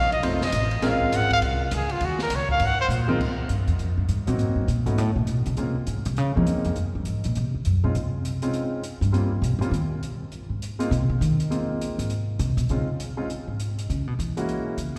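Playful small-group swing and bop jazz at a brisk 202 BPM in Ab major, where a smooth-topped, vibrato-rich trumpet with scooped notes leads until 2.9 s, a drum fill on a dark, boomy-kicked kit with a high-tuned snare marks the handoff, and from 3.2 s the woody, thumpy pizzicato upright bass solos up front over clear, deep-bassed concert grand piano chords, all bathed in a lush church reverb.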